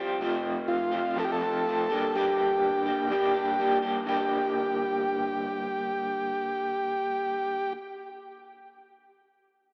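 Rock with a dark, mysterious air, cut from a longer piece and bathed in a lush hall reverb that gives the whole mix a dreamy, soaked feel. An electric guitar through a small old amp opens at 0.0 seconds with a twangy, slightly broken-up, lo-fi riff, its picked notes pulsing with tremolo up front. At 0.7 seconds a vintage combo organ joins with a mellow, clean melody carrying light vibrato and a diffuse ambient delay, over harmony that moves from F to G minor.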